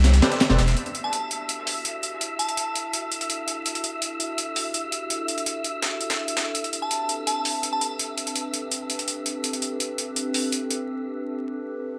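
Drum and bass with a jungle edge, this frenetic yet atmospheric excerpt opens with a deep, thick sub bass, a crunchy, rolled-off breakbeat kit and brief tine electric piano stabs with ensemble chorus and dub echo, all of which fall away by 0.7 seconds. Running from the very start, a pitched-up, compressed sampler-style break with high-passed hats and a high-tuned snare drives on up front until 10.8 seconds, beneath a warbling, nostalgic lo-fi pad of sustained chords carrying a long filter sweep and an airy, breathy wind-like noise layer. A crystalline FM bell with chorus, phaser and dub echo chimes a sparse melody over the minor eleventh harmony, and vinyl crackle and a lush hall reverb frame the whole piece.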